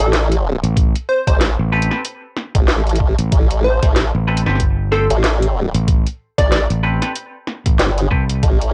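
A formant-sweep wobble bass sits up front in this gritty, funky glitch hop excerpt, its detuned pulse-and-sine tone thickened by chorus and tube saturation, holding low between G1 and A1 over a single Am7 chord in A minor. A growling fingered electric bass enters at 0.6 s, bright, punchy and overdriven. A compressed, pitched-down electronic kick joins at 0.8 s with a thumpy, tape-softened weight. The layered drum kit supplies a cracking snare and metallic hats from the start, re-recorded in a small room with cassette coloring. A plucky, catchy unison lead built from square and triangle waves with a sub octave and filter sweep carries the melody between A4 and D5 through analog delay until 6.6 s, while clean, hollow-body guitar stabs add sidechain pumping and their own delay. At 94 BPM in 4/4 with a 58% swing on the sixteenths, the piece has the feel of a home cassette recording touched by light reverb.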